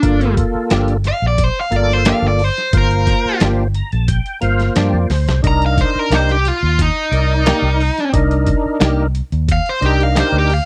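A smoky, mournful soul blues in G minor at 89 BPM opens with lead guitar, organ, bass and drums together. A bright, overdriven lead guitar carries the melody up front, while a full, gritty tonewheel organ with percussive second-harmonic attack, chorus vibrato and a slow rotary speaker supplies the accompaniment. Beneath them a dark, round, foam-muted fingered bass sits forward in the mix, and a lo-fi sampler-style kit of hi-hat, medium-tuned snare and thumpy kick sounds pitched down, muffled and compressed, as if re-recorded in a small room. At 0.7 seconds a clean, direct-recorded electric guitar joins with picked stabs thickened by ensemble chorus. The organ takes a fill from 3.4 seconds, and the drums add a short fill just before the harmony moves from Gm7 to Cm7 at 5.4 seconds, all within a straight-eighth 4/4 groove captured dry and close in the manner of a 1970s studio, cut from a longer piece.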